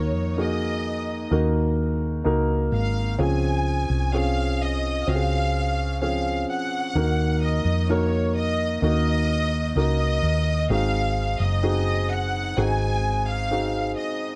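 A pop ballad at a slow 64 BPM in a straight 4/4, this short excerpt feels heartfelt and hopeful. A lush, bowed violin section carries the melody with smooth, even vibrato, sitting close and up front. Beneath it, a baby grand piano supplies the accompaniment with an open tone and long sustain. A hollow-body, short-scale electric bass played with the fingers gives a dark, round and punchy low end, and it drops out at 13.9 seconds just before the end. The harmony moves from Ebm to Dbmaj7, back to Ebm, and then to Ab7, all within a studio reverb.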